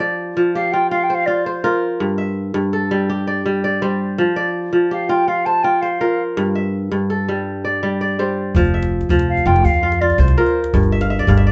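Warm and hypnotic, this short excerpt of West African string and xylophone music moves in a straight 12/8, cut from a longer piece. A ringing, crisp kora spins fingerpicked arpeggios up front throughout, while a mellow silver concert flute carries the melody from 0.5 seconds, its pure, hollow tone touched with vibrato and set in plate reverb so it sounds distant yet present. The harmony rocks steadily between F and G minor. Near 8.5 seconds a woody, thumpy pizzicato upright bass enters, joined by a tight, cracking djembe with metal rattles sitting close and dry in the background. The kora closes with a brief fill, all within a moderate studio room and a soft-topped, rounded sound.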